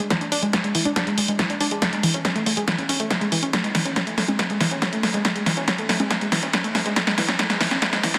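A round, full-bodied analog pluck spins arpeggios with chorus, pumping sidechain and dub echo from the opening moment, over an up-front analog drum machine of congas, hi-hat and punchy snare whose hats and percussion also pump, while a tight, very quiet sawtooth sequencer bass drives underneath. A layered, tape-warm electronic kick sits in the background from 0.1 s, as this soaring, euphoric uplifting trance build-up, cut from a longer piece, runs as one long drum fill through chords moving from E7 to A/E, F#m, D5 and B5. A lush hall reverb and a dense, heavily limited modern master surround the passage.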